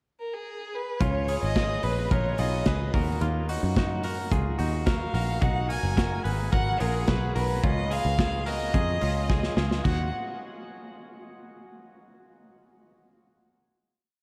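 A dreamy, reverb-soaked mix bathes this short piece of jangly indie pop in the long tail of a cathedral-like space, giving its wistful, restless mood a hazy glow. A rich, smooth violin opens alone at 0.2 seconds with a distant, vibrato-laden bowed melody built from call-like motifs, colored by analog delay. At 1.0 seconds the band enters: a bright, twangy clean electric guitar rings out picked arpeggios doubled in thirds, also touched by analog delay, while a dark, round, foam-muted picked bass sits up front with a melodic, rounded line. The acoustic drum kit drives a dance-floor indie beat with off-beat open hi-hats, a punchy kick and a medium-tuned snare under a rolled-off top. After a drum fill at 9.3 seconds, the pre-chorus resolves onto a final minor chord that lingers in the reverb until the close.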